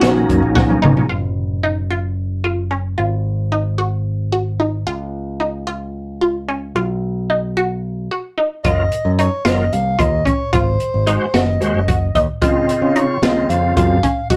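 Bright and driving, this progressive instrumental in 7/8, cut from a longer piece and captured as a rough rehearsal-room recording with light reverb, opens with a brief reedy tonewheel organ solo through a fast rotary speaker, a drum fill from a dark, boomy-kicked jazz kit and a fleeting mellow alto saxophone line, then leaves a squelchy, phased blip pluck arpeggiating over punchy picked electric bass until organ and drums return at 8.6 s beneath a smooth soprano saxophone melody with vibrato.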